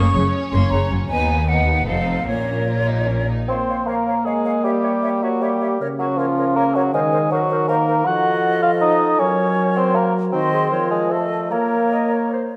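Classical and dramatic, this fast romantic orchestral movement in Bb minor moves in 3/4 at 146-162 BPM with a restless, rubato feel, and it is cut from a longer piece. It opens with the full string body: a lush, distant violin section carries the melody over a second violin line with expressive vibrato, while violas and cellos sit in the background and double basses anchor the low end. A bright, airy silver flute floats above the strings from the start and sings on through to the end. At 3.5 s the strings give way to the winds, as a mellow clarinet and a smooth-topped cor anglais add second lines, a roomy bassoon sits up front in the accompaniment, and a soft-attacked French horn section holds sustained chords. The harmony leans on diminished and dominant colours, such as F7b9 and Bbdim7/G, before settling back on Bb minor, all bathed in a wet scoring-stage reverb.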